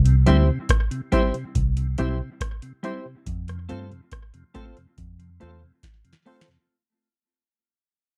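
A dry, close 1970s-style studio sound frames this short, fading cut from a laid-back, sunny roots reggae tune at 70 BPM. A booming analog drum machine with deep kick, crisp snare and metallic hats sits up front beside a round, foam-muted fingered electric bass. Over a move from C to F, a mellow, compressed electric guitar through tape echo, a barky reed electric piano playing stabs with overdrive and fast tremolo, and a piping tonewheel organ with slow rotary speaker and slapback echo fill in, before a drum fill arrives at 5.8 seconds.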